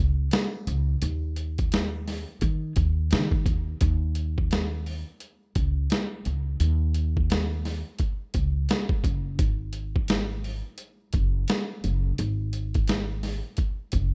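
A woody, pizzicato upright bass opens this smoky, cool jazz-hop excerpt before a gritty, pitched-down boom bap drum kit with a thumpy kick, high-tuned snare and hi-hat joins at 0.3 s, both parts sitting up front in a rough home demo mix with light reverb, swinging 16ths and a shift into a new section at 3.8 s.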